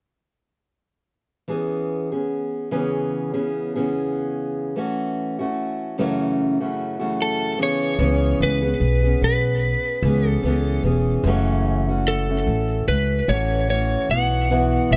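Pop with a heartfelt, carefree mood and a gentle swing, opening at 1.5 s on a bright, fingerpicked steel-string acoustic guitar moving between C#m7 and F#m7 chords. At 7.2 s an electric slide guitar, played with fingerpicks and slightly broken-up and compressed, takes the melody with digital delay. At 8.0 s a woody, thumpy pizzicato upright bass joins up front under light reverb before the passage settles on Bsus4.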